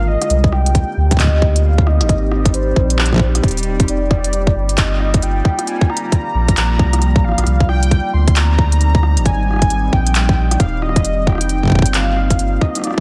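Cerebral and eerie, this IDM excerpt moves at 134 BPM in C minor, with a 62% swing on the sixteenths giving the groove a loose, lilting push. A velvety synth lead carries the melody from the start, its detuned, wave-folded tone softened by chorus, vibrato and delay. Beneath it, a glassy FM pad holds ethereal, slow-blooming chords through ensemble chorus and its own reverb, pumping against the sidechain. A round sine sub bass sits deep and up front, stopping at 12.6 seconds. An organic electronic kit of handclaps, crisp hats and rim clicks, treated with delay, enters at 0.2 seconds, followed by a tight kick at 0.4 seconds, both carrying a tape-tinged, small-room character. Far in the background, a resonant sawtooth texture bubbles through random filter steps on a single G3, while the harmony cycles through Cm7, Abmaj7, F7sus4 and Bb7 under a light overall reverb.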